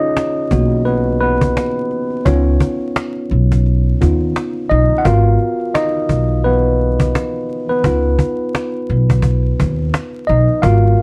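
Vinyl crackle and light reverb give this dark, hazy lo-fi hip hop excerpt a reflective mood, as a worn, slightly out-of-tune tine electric piano, softened by cassette tape and a low-pass filter, takes the lead over swung G#m9 and C#9 chords, supported by a close, dry cajon played with hard hands and a woody pizzicato upright bass on steel strings that enters at 0.5 seconds.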